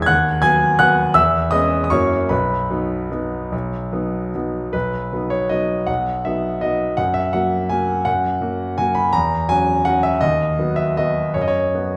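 In a lilting 3/4 waltz with free, rubato timing, the tempo moves between 142 and 179 BPM, giving this classical excerpt in B major an elegant, graceful sway. A solo grand piano plays throughout the 12 seconds, spanning the keyboard from a deep B1 up to a bright G#6. Its tone is clear, natural and intimate, placed up front so that the clatter of the instrument's action can be heard beneath the notes. The opening phrase returns at 4.7 seconds, the harmony moving through chords such as C#m7/E, F#7 and F#7/E before settling on an unresolved F#sus4 as the passage breaks off mid-piece. A wet recital hall reverb with a 1.6-second decay surrounds the playing, and the instrument is tuned slightly low, to A4 = 438 Hz.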